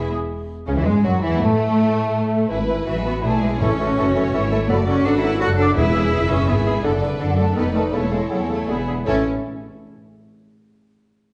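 Rich bowed cellos carry the bass with the double basses, which sit up front with expressive portamento, in this cheerful, lively classical-period movement for symphony orchestra in triple time, cut from a longer piece. A focused violin section plays the melody from the background. A lush second violin section, an airy flute ensemble, and a bright solo clarinet share the second lines, while a clear bassoon, smooth violas, and a very quiet, loose French horn section supply accompaniment and sustained chords. Round, soft-mallet timpani join at 3.6 seconds, and the whole is set in a dark production with a recital-hall reverb.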